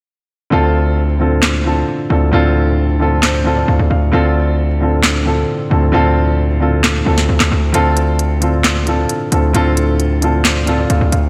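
This brooding, eerie trap piece moves at 133 BPM in a half-time 4/4 feel, resting on a Dm7 chord in D minor. A dark, mellow baby grand piano carries the accompaniment from the start, its intimate tone showing audible action noise and short sustain under a subtle chorus and low-pass filter, and it adds a brief fill early on. Beneath it, a distorted 808-style bass holds D2, heavy and saturated, with a fast attack and a noise layer over its sine core. The electronic trap kit arrives at 1.4 seconds with handclaps and a sharp snare, and its crisp hi-hats join only at 7.7 seconds. Piano, bass and drums sit up front, while a lush hall reverb soaks the mix in a dreamy haze.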